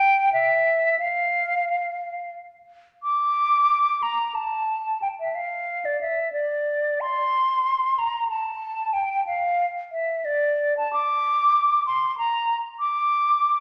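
In a lilting 3/4 with a rubato feel, this baroque-style classical fantasia moves at roughly 86 to 98 BPM, its pulse bending freely while keeping a dance-like lift. A solo concert flute carries the whole piece from 0.0 to 13.6 s, ranging from D5 up to D6 with a hollow, pure tone and vibrato. Its tongued articulation gives each note a clean start, and the instrument sits up front in the sound. The key settles into D minor from 3.0 s. A wet recital hall reverb with a 1.5 s decay surrounds the flute, adding space to this serene excerpt cut from a longer work.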